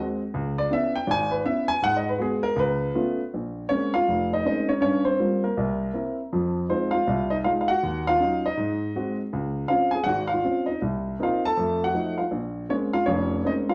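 A warm, natural baby grand piano plays an unaccompanied late-night jazz solo with a cool swing feel, spanning low bass notes to the upper middle of the keyboard and moving into a minor-key passage at 3.3 s, all set back in a studio room with a lush reverb in this brief cut from a longer piece.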